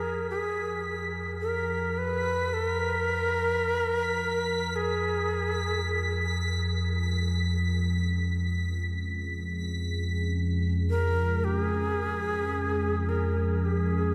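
An airy, close-miked bamboo shakuhachi carries a crisp, chiffy melody with vibrato through diffuse ambient delay in this dark, cavernous dark ambient drone in free time, sitting up front beside a detuned analog sawtooth drone with lush chorus and a filter sweep, while a bubbling, resonant texture of random filter steps sits high above and a deep, warbling pad fades in from 1.4 s in the background, the whole short excerpt suspended in a huge, wet reverb.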